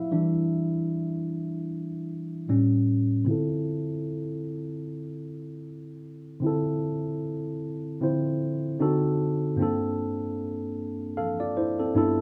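A worn, slightly out-of-tune tine electric piano sits up front in this short R&B fragment cut from a longer piece, its clean tone coloured by a combo amp and shaded by a low-pass filter. The mood is late-night and introspective, moving at a relaxed 76 BPM in 4/4 with a gentle swing on the sixteenths, in D minor. The piano plays alone across a span from G2 to F5, opening on Em7 and A7 before settling onto Dm9 at 3.3 seconds. From that point the filter sweeps over the instrument as the harmony passes through D7b9 and arrives on Gm11 at 9.6 seconds. The sound is dry and intimate, with the small-room ambience and rough edges of a home demo.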